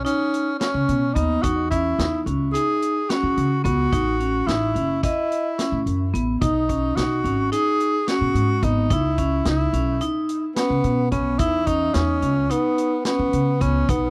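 A dry, close 1970s-style studio sound with little reverb frames this driving, bright progressive instrumental, cut from a longer piece and moving in a straight 9/8 at 217 BPM counted in eighths over chords such as C#sus2, Badd9 and C#madd9. Up front, a whispered, intimate tenor saxophone carries the melody with breathy vibrato, scooped notes and a soft attack, its tone touched by tape echo. Hard-mallet vibraphone rings out metallic arpeggios with the motor off, while a woody pizzicato upright bass and a vintage kit with punchy kick, medium-tuned snare, hi-hat and a rolled-off top drive the band underneath.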